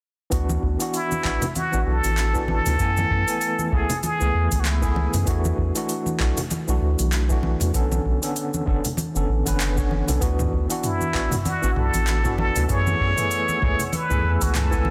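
This excerpt has a dense, heavily limited modern sound with light reverb, cut from a longer sunset chillout piece that feels relaxed and blissful at 97 BPM in D lydian, with a 16th-note swing. A barky, gritty overdriven tine electric piano runs through a combo amp with fast tremolo and delay, carrying the chords from D69 through F#m11, E9sus4 and Bm9, while a deep, round sine sub bass holds sustained notes underneath. A smooth-hatted deep house kit of handclaps, hi-hat, shaker and toms sits with an overdriven analog kick re-recorded in a large room, and ringing, close and dry congas played with soft hands join at 0.5 seconds in the background. Up front, a breathy, whispered trumpet with plunger mute plays a jazz-style solo with wah-wah, vibrato and delay, first from 0.9 to 5.1 seconds and again from 10.8 seconds. At 10.7 seconds a shimmering, ethereal ambient pad enters in the background, its detuned, granular chords carrying chorus and its own reverb.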